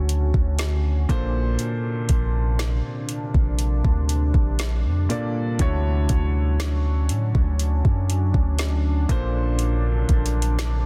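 A long, sustained 808-style bass sits up front in this tender, smooth contemporary R&B passage, its deep, mellow sine tone striking with a fast attack and then decaying beneath the chords. A produced, electronic drum kit plays a straight 4/4 feel from 0.1 s, pairing a soft kick with a woody snare and metallic hi-hats that carry the close character of a small room. A natural-sounding grand piano supplies the accompaniment, moving between Dmaj7 and Bbmaj9 chords. Beneath it, a dark, moody pad of detuned sawtooth voices with a sub octave fades in slowly and holds long, softened by chorus and its own reverb. The mix is dense and heavily limited in a modern style, set in a digital ambience, and the clip is cut from a longer piece.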